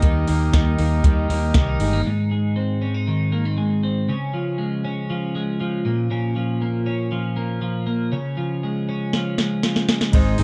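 A soft, up-front vintage rhythm box with deep kick, crisp snare and metallic hats drives this breezy, youthful jangly indie pop excerpt at 119 BPM in Ab major, joined for the opening two seconds by a round, punchy muted bass, a mellow combo organ and a fingerpicked steel-string acoustic guitar, while a bright, twangy twelve-string electric guitar, compressed and treated with subtle chorus and tape echo, plays arpeggios throughout and then carries them alone until the drums return with a fill at 9.1 seconds and the bass, organ and acoustic guitar rejoin at 10.1 seconds, set in a dark production with light reverb and faint mains hum.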